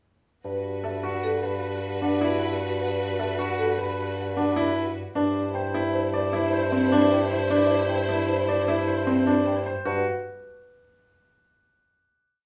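A straight six-beat pulse drives this bright, hypnotic piece of minimalist classical pattern music, where a brilliant, up-front grand piano repeats a short arpeggiated cell with audible action noise and long sustain, a woody rosewood marimba loops its own melodic cell in the background, a rich, bowed string section holds soft-attack vibrato chords, and a close-miked bassoon anchors long bass notes on G, all set in a large, wet studio reverb that places the ensemble further back in the room, moving from Gmaj7 to C/G before settling on a final open chord at 9.9 seconds.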